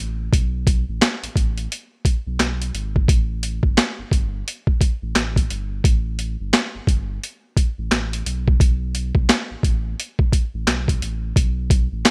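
The recording sounds dry and rough, like a home demo, with little reverb around the parts. This moody, dark boom-bap hip-hop groove moves at 87 BPM in 4/4, its sixteenths swung at 62%, and it is cut from a longer piece. A sampler-style drum kit of kick, snare, hi-hat and handclaps sits up front from 0.3 seconds, compressed and pitched down, with a thumpy kick, a high-tuned snare and a gritty, tape-warm grain. Beneath it a deep, full sub bass with an added octave holds low between G1 and B1, its sine tone striking with a fast attack and sustaining, set well below the drums in the mix. The two parts carry the whole twelve seconds as a single section, the bass stopping at 12.0 seconds just before the drums.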